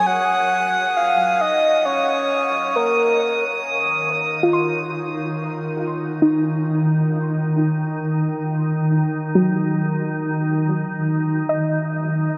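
In free time, this serene, reflective ambient fragment in Eb dorian opens with a breathy, flute-like synth lead carrying the melody with vibrato and shimmer reverb over a glassy texture of drifting overtones; the lead stops at 3.4 seconds and the texture at 3.7 seconds as the harmony moves from Gb to Ebm, while a soft, round, dark pluck plays chorused arpeggios throughout and a calm, up-front organ-like drone holds a sustained Eb from 4.0 seconds, the whole set inside a huge, wet reverberant space.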